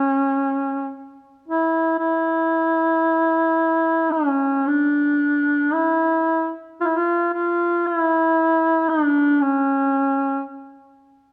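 This short excerpt unfolds in free time. It is Caucasian folk music in a longing, solemn mood, carried entirely by a solo duduk that plays from the first moment until 10.4 seconds. The duduk's tone is warm, with a soft attack, vibrato and scooped notes that give each phrase a folk-style quality. It sits up front in the sound, though with a distant, roomy character, staying within a narrow range from C#4 to F4. Light reverb surrounds the instrument, and the tuning rests slightly below standard pitch, at A4 = 436 Hz.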